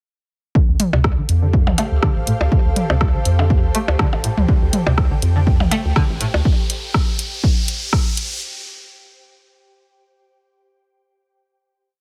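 A dry, punchy four-on-the-floor electronic kick drives this sparse, quirky minimal techno piece at 122 BPM in 4/4, with a 55% swing on the 16ths and programmed closed hats and rim clicks from a punchy analog drum machine, their hats and snare thinned by a high-pass filter. Up-front electronic toms and percussion blips add clicks in cross rhythm, while a rubbery, hollow square bass rolls a bouncy staccato groove in D minor, pumping under the sidechain. A twangy, string-like resonator pluck repeats a 16-step sequence through chorus, cassette tape grit and tape echo, its filter sweeping from 0.6 s to 6.5 s as the whole short piece builds. Behind it sit a bubbling stepped-filter texture holding a high note and an ethereal, airy pad entering at 1.3 s with slowly shifting chords, both softened by reverb. A riser enters at 3.2 s to carry the build past the point where the melodic parts drop away, with the kick and drum machine continuing briefly in a dry, close-sounding mix.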